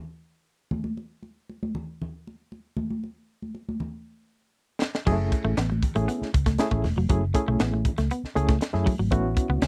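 Funky and hypnotic, this dry, close 1970s-style funk excerpt at 118 BPM in F# minor opens with thick-skinned, high-tuned congas alone from 0.7 s, then the tight, high-snared drum kit enters with a fill at 4.8 s, and at 5.1 s a dark, foam-muted fingered bass, a clean, compressed semi-hollow guitar riff and a barky, lightly overdriven electric piano with fast tremolo stabbing up front all join over an F#m9 chord that turns to A6.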